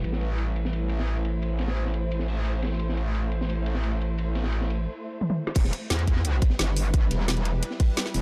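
A tense, futuristic dark technical drum and bass excerpt, cut from a longer piece, where a swarming, detuned drone carries sustained chords under a filter sweep while a metallic, distorted wobble bass sits up front, two drum kits (one gritty and saturated with a high-tuned snare, one with a woody snare and bright hats) lead into a fill, and an electronic kick enters at 5.6 seconds for the drop.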